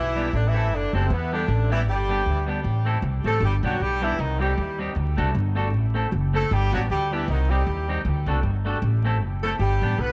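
Cheerful and joyful, this ska cut from a longer piece moves at 155 BPM in G major with a light swing. A clear, punchy horn section carries the melody with light vibrato and octave doubling, touched by dub echo. A woody, thumpy upright bass anchors the low end, while a bright, twangy clean electric guitar plays accompaniment from 0.2 to 9.9 seconds, bathed in spring reverb. Chords such as Am, G, Cm and D pass under a layer of vinyl crackle and light studio reverb.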